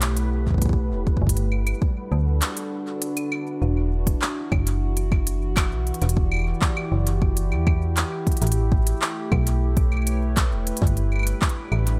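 A digital ambience surrounds this cerebral, intricate IDM excerpt, where a warbling, lo-fi, detuned pad holds dark, nostalgic sustained chords with chorus and reverb over an up-front metallic FM bass with fast-attack, decaying notes, while an organic electronic kit of overdriven claves, handclaps and crisp hats runs throughout beside a deep electronic kick from 0.5 s, and a resonant, bubbling texture of random filter steps pumps softly in the background until 3.6 s.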